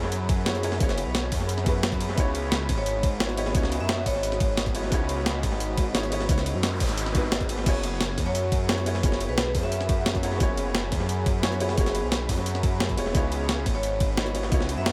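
A straight 4/4 groove at 175 BPM drives this melancholic, lush stretch of liquid drum and bass in C# minor, cut from a longer piece, with an overdriven, knocking electronic kick joining at 0.3 seconds beneath a gritty, pitched-up breakbeat kit of snare, hi-hat, ride and crash that sits up front with analog delay. A menacing detuned saw bass, saturated and evolving with a filter swell, holds the low end, while a felt-muted upright piano adds soft, intimate accompaniment with audible action noise and tape echo. Behind them a glassy FM pad sustains ethereal chords through ensemble chorus and its own reverb, pumping against the sidechain, as the harmony moves between F#9sus4 and C#m11. A close-miked vibraphone with medium hard mallets and the motor off rings out short metallic phrases in the background, first at 2.8 seconds, and an electronic noise sweep drifts faintly through at 6.5 seconds. 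The mix is echo-heavy with light reverb, keeping the mood lush yet shadowed.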